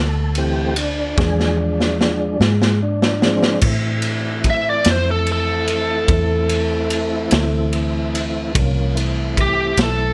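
The recording sits in a light reverb, its raw, gritty drum kit and biting lead guitar placed up front in this slice of a longer piece. It is a soulful, smoky slow blues in A minor at 49 BPM in 12/8 with a straight feel, moving from A minor to E7b9 and back. A tonewheel organ holds clean, clear sustained chords through a slow rotary speaker with chorus vibrato and audible key click, and it takes a solo at the opening while a round, dark, foam-muted fingered electric bass plays underneath. The acoustic drums, captured in a small pumping room, sound saturated, with a boomy kick, a medium-tuned snare, crash and ride cymbals and a rolled-off top, and they play a fill from 1.2 to 3.6 seconds. At 4.5 seconds the overdriven, picked lead guitar enters with the melody, bathed in plate reverb.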